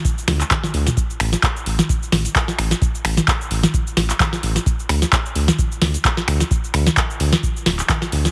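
Trippy and driving, this short acid house excerpt moves at 130 BPM in 4/4 with a 55% swing on the sixteenths. A booming analog drum machine sits up front from the start, its crisp snare, metallic hi-hats, handclaps, finger snaps, cabasa and toms carrying a tape-warm character and a short room on the snare, clap and hats, with a drum fill between 0.3 and 1.0 seconds. Alongside it, a dry, deep electronic kick drum runs until 8.0 seconds. The round analog bass enters at 0.3 seconds, a dark, detuned blend of sawtooth, sine and triangle waves with a fast attack and sustained notes between D1 and D2, pumping under sidechain compression. Light reverb and heavy multiband compression give the whole mix a squeezed, radio-like sound.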